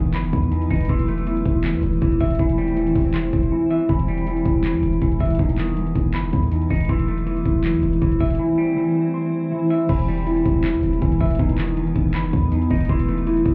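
A mellow tine electric piano plays arpeggios through digital delay over a dark, clean semi-hollow guitar, a blurred granular cloud pad with built-in reverb in the background, and a punchy, heavy 808-style bass, opening this eerie trap excerpt in E harmonic minor at 160 BPM with a half-time feel. The electronic drum kit enters at 0.1 s with a hard-clipped kick, metallic hats, handclaps and crash, drops out briefly at 3.5 s, and returns as the chords cycle through B/E, Am/E, C and Em. The whole mix sounds muffled, as if heard through a wall, with club reverb.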